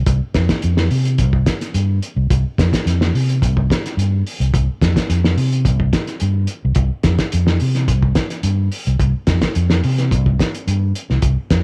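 A dark, round, punchy fingered electric bass with tube saturation opens this defiant, driving afrobeat excerpt, soon joined by an up-front, cloth-damped drum kit whose muffled, gritty small-room sound pairs a fat snare and tight kick with hi-hat, all kept dry with little reverb.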